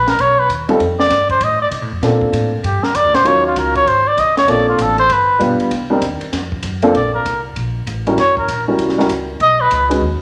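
Relaxed and warm, this short cut from a longer small-group swing and bop piece features a cup-muted trumpet soloing up front with a soft, veiled tone, while an up-front, woody upright piano comps beneath it from 0.7 seconds. An upright bass plucks a growly, thumpy line, and a compact cocktail kit of hi-hat, kick, ride and high-tuned snare adds a dark, smooth swing. A large studio reverb gives the group a spacious sheen across two passes through the same section, the second beginning at 6.9 seconds.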